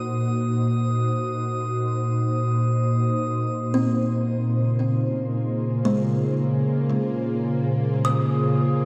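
Melancholic and spacious, this ambient passage in Bb minor drifts in free time, cut from a longer piece and bathed in a wet cathedral reverb with a dark production. A glassy, ethereal FM pad sits up front throughout, its full-bodied chords blooming slowly under an ensemble chorus and a shimmer reverb, opening on a rootless Ab7/Bb. Above it, a bright, calm glass-harmonics texture of drifting sine overtones hovers high and faint until 3.2 seconds, when it falls away and the harmony settles onto Bbm7. A soft kalimba joins at 3.7 seconds with short, mellow, woody arpeggios that trail into tape echo and shimmer. From 4.8 seconds a tense, string-like drone enters, its sawtooth-and-noise tone edged with ring modulation and vibrato.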